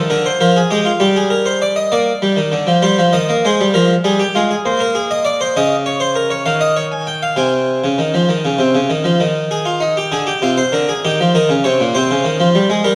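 A classical, baroque-style two-part invention for solo harpsichord in Ab major, this short passage cut from a longer piece moves at 66 BPM in a straight 6/8, with a mood that is at once driving and solemn. The harpsichord plays throughout, spanning Bb2 to Ab5, and sits up front with a plucked, brilliant French-style tone reinforced by octave strings. An opening section gives way at 1.9 seconds to a contrasting middle passage that travels through Gm, Cm, Fm and Bb before settling on Ab/C, and the opening material returns at 9.2 seconds, closing with Bb7 and Eb7 on the way back to Ab/C. The sound carries a wet recital hall reverb with a 1.8-second decay, while worn, warbling old cassette tape adds a wavering pitch drift that gives the instrument a faded, antique cast.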